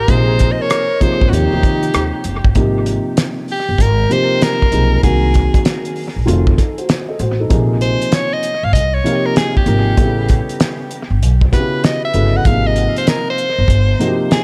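Warm and cool at once, this jazz-hop hip hop excerpt in Ab major moves at 97 BPM with a swung 16th feel, as an edgy, forceful soprano saxophone with vibrato and dub echo carries the melody and takes a solo from 2.6 s, a hollow concert flute adds a brief background second line until 2.2 s, a woody pizzicato upright bass holds the low end, a dark, boxy grand piano plays up-front accompaniment, and a cloth-damped, thuddy drum kit with a fat snare, tight kick, rim click and hi-hat sits up front with its own dub echo in a light, echo-heavy studio mix moving through chords such as Abmaj9, F7b9 and A9.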